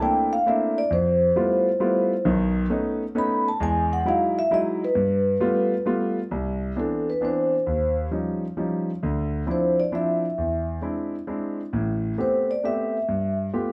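A dark production with moderate small-room reverb frames this sophisticated, swinging jazz waltz fragment, where a mellow, metallic, ringing vibraphone played with soft mallets and slow motor vibrato carries the melody and takes a solo turn through the first 6.3 seconds, while an intimate, up-front concert grand piano, warm with deep bass and audible action noise, supplies rich extended harmony such as C13, Fmaj9#11 and E7b13.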